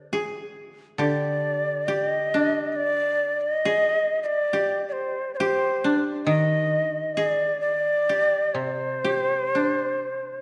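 Japanese traditional chamber music, meditative and still, moves in a rubato 4/4 around 68 BPM as two woody, fingerpicked kotos, one low in accompaniment and one carrying a second line, sound from the start. A breathy, bamboo-toned shakuhachi with vibrato and chiff enters at 1.0 seconds with the melody, sitting up front in a moderate concert-hall reverb through this 10.4-second fragment of a longer piece.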